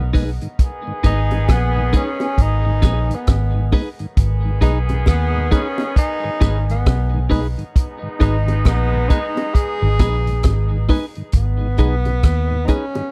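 Laid-back and meditative, this roots reggae passage at 67 BPM sits in G# minor over a single G# minor chord, with a 16th-note swing giving it an unhurried lilt. A breathy tenor saxophone carries the melody with subtone and scooped notes, trailed by dub echo, and from 11.3 seconds it steps forward as a solo through the end at 13.1 seconds. A vintage horn section plays a tight second line alongside it until 10.9 seconds, while a clean, picked electric guitar and a mellow tonewheel organ with slow rotary speaker and key click fill out the accompaniment, both also carrying dub echo. A dark, foam-muted fingered electric bass and a vintage drum kit with a tight kick, hi-hat and rim click sit up front, with high-tuned bongos played by soft hands tucked in the background. From 4.6 seconds a hollow, percussive organ stab with chorus adds decaying accents behind the band. The sound is a dry, close 1970s-style studio recording in a small room, cut from a longer piece.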